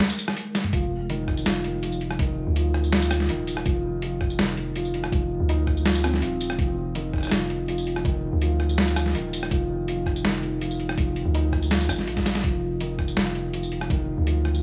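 A very quiet, warbling pad and a gritty, pitched-down sampler drum kit with a medium-tuned snare open this dark, cinematic half-time drum and bass excerpt at 164 BPM in F dorian, and after a fill at 0.5 seconds the drop lands at 0.7 seconds with a thumpy compressed kick, a deep decaying sine 808 bass, and an intimate felt-muted upright piano playing arpeggios through tape echo, its action noise audible up front in a dry, saturated small-room recording with light reverb.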